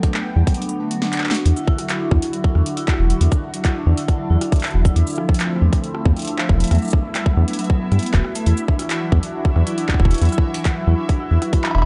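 A round, deep analog bass sits up front from 0.4 s in this eerie, glitchy IDM excerpt, under a swirling, detuned pad with phaser and chorus and close-miked vibraphone arpeggios played with medium mallets, its metallic ring carried by dub echo. A tight, tape-warm electronic kick and an analog electro drum machine with a punchy snare, metallic hats, handclaps, cabasa, cowbell and rim click drive a straight 4/4 groove, with a break from 0.6 s and a drum fill from 1.0 s leading up to 1.5 s. At that point a bubbling, resonant texture with random filter steps and sidechain pumping enters over the dark, lightly reverberant mix.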